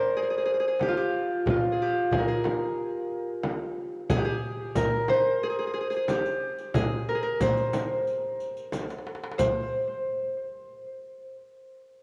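Bathed in a wet, lush hall reverb on a home cassette recording, this hypnotic, soulful Turkish makam ensemble fragment sets a bright, ringing, fingerpicked Celtic harp melody up front, colored by tape and analog delay, over a clay-shelled darbuka played with soft hands and given a compressed, saturated edge, a deep, large frame drum that enters at 0.8 s, and dark riq jingles drifting in from a distant room at 4.1 s, before a drum fill at 8.7 s.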